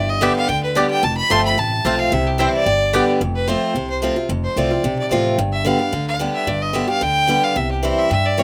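A straight 4/4 pulse drives this short, virtuosic bluegrass fragment, cut from a longer piece, with a rustic, dry open-air sound. A clear, intense bowed fiddle leads up front with light vibrato and solos through the first 3.2 seconds, while a mandolin adds woody double-string stabs with slapback echo until 3.0 seconds. A bright, boxy parlour guitar picks the accompaniment up front, a thumpy pizzicato upright bass holds the bottom, and the harmony moves among G, F and C.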